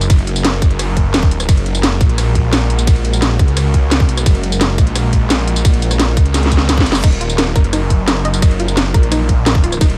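A dry, up-front mix opens this tense, mechanical cut of dark technical drum and bass, where a tight electronic kick and a layered kit with cracking snare and metallic hats drive a straight 4/4 beneath a snarling, detuned saw bass that growls with overdrive and a moving notch. Far behind them, an eerie inharmonic FM drone holds sustained chords through chorus and its own reverb, pumping against the kick as the harmony shifts from Ebm to Gbadd9 and back. A drum fill and a very quiet reverse cymbal lead into 7.0 s, where a lush, punchy unison pluck enters with arpeggios that pump and trail dub echo.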